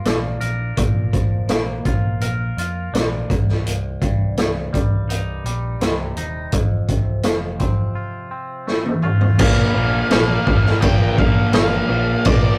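A rough rehearsal-room recording with tube saturation and light reverb carries this dark, angsty quiet-loud alternative rock at 84 BPM in 4/4. A clean, twangy electric guitar plays phaser-tinged arpeggios over Bb, Cm and F, backed by a round, punchy hollow-body bass and a gritty, up-front garage drum kit with a medium-tuned snare, until a drum fill launches the loud section at 9.4 seconds. There a bright distorted guitar and a fuzz guitar set further back play a riff on Bb5 while a dark octave-fuzz lead carries the melody, and this passage is cut from a longer piece.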